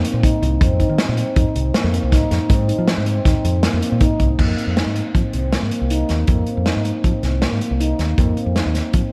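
Progressive instrumental band music in 5/4 with a tense, brooding mood, where a ringing, meditative handpan with slapback echo plays arpeggios up front over a direct fingered electric bass and a mid-forward vintage drum kit of crash cymbal, hi-hat, tight kick and snare, heard in a light small-room ambience as the passage moves into a new section at 4.4 seconds.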